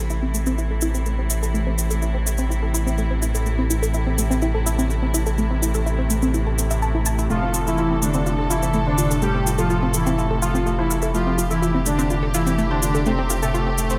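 A gritty, saturated synth bass sits up front in this melancholic, dark melodic techno excerpt, growling between F1 and A1 at 125 BPM in a straight 4/4 feel in A minor. Above it, a lush, punchy unison pluck spins arpeggios with a short decay, its tone roughened by vintage 12-bit sampler grit, echoed by delay and shaped by a filter sweep that runs the whole 14 seconds. A clear, earthy string section holds low-pass-filtered sustained chords, while a resonant drone on A2 with moving overtones, chorus and its own reverb hums in the background from 0.4 seconds, and a grainy acoustic cabasa adds small-room shimmer. The harmony rests on A minor before shifting to F at 7.3 seconds, where a soft, smooth supersaw melody with delay enters alongside an airy, dreamy second line that glows with chorus and vibrato further back. Light reverb and digital ambience give the mix a faint sense of space.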